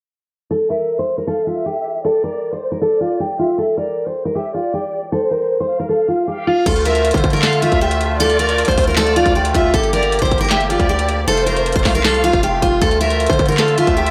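Hard-hitting and dark, this trap cut from a longer hip hop piece moves with a heavy half-time feel. A bright, full-bodied picked steel-string acoustic guitar carries the melody up front from 0.5 seconds, joined at 0.7 seconds by a lush, woody violin section singing a second line with vibrato through tape echo, all beneath a filter sweep. At 6.7 seconds the beat arrives: a produced trap kit with a hard-clipped kick, sharp snare, metallic hats, handclaps and crash cymbal, re-recorded in a large room. Alongside it come an aggressive, saturated 808-style bass with a noise layer and a fast attack that then decays, and a reedy, shimmering musette accordion holding sustained chords over a Dm, Gm, F and Dm progression. The sound is dry and gritty, with transformer saturation, a low-pass filter and studio reverb.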